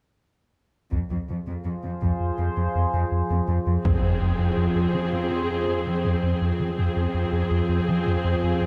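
Close, detailed microphones and light reverb frame this tense, vast excerpt of a hybrid orchestral and electronic film score in F minor at 82 BPM, built around an F minor chord. A dark, gliding sawtooth synth bass and a lush, distant cello section enter at 0.9 seconds over hushed taiko drums struck with heavy sticks, and at 1.6 seconds an evolving, detuned analog drone joins with sustained chords bathed in chorus. From 3.9 seconds a smooth, bowed viola section adds accompaniment, while a huge, bright impact sounds very quietly until 6.8 seconds.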